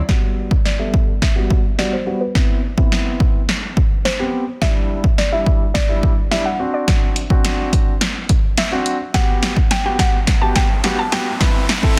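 A punchy analog drum machine sits up front in this euphoric, carefree dance-pop excerpt, its kick, snare and hi-hat re-recorded in a large room, with soft clipping giving the snare extra bite. A warm concert grand piano carries the accompaniment in a straight 4/4 feel, intimate and polished, with audible action noise, deep bass and long sustain, its sound pumping under sidechain and softened by a low-pass filter. In the background, a woody, round, mallet-like FM synth pluck plays the melody with a fast attack and short decay, its bright tone shaded by chorus, a low-pass filter and tape echo. The whole clip works as a build-up with a drum fill and filter sweep running throughout, moving through Gmaj7, Cmaj7, Em7 and D7 before returning to Gmaj7 and Cmaj7. An electronic riser enters at 10.2 seconds beneath a digital ambience, and the master is dense and heavily limited in a modern style.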